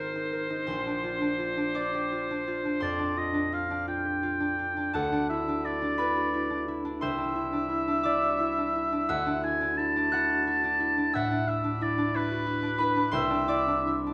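A wet recital hall reverb, lingering about 1.5 seconds, surrounds this short classical passage cut from a longer piece, an impressionist duo for oboe and concert harp with a pastoral, luminous mood. The music moves slowly in 12/8 at 58 BPM, counted in dotted quarters, with uneven beats and a free rubato that lets the phrases breathe. The oboe carries the melody between B4 and A5, sounding clear and roomy with a light vibrato in a classical solo style, placed up front yet with a faintly distant air. The harp supplies a ringing, fingerpicked accompaniment of warm acoustic tone, spanning from Ab1 to F#6, also up front. Its harmony drifts through colorful added-note chords such as Abadd9, Bb69, Dadd9 and D69 before settling on Cadd9 near 13.1 seconds. The oboe falls silent at 13.9 seconds, and the harp rings on alone until 14.1 seconds.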